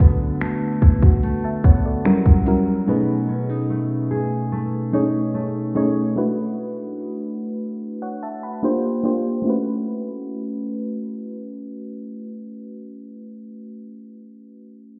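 A round, soft, dark FM electric piano with a noise layer and chorus sits up front through this dreamy, romantic contemporary R&B excerpt in A major at 73 BPM, its fast-attack, decaying tones carrying the harmony through chords such as F#7b9, B13 and E9sus4. A trap kit of hard-clipped kick, metallic hats and finger snaps drops out at 2.7 seconds, while a fingerpicked nylon-string guitar plays full-bodied classical arpeggios through a digital delay until 6.7 seconds. The whole piece sounds muffled, as if heard through a wall in a stone room with light reverb, and a filter sweep runs until a new section arrives at 9.4 seconds.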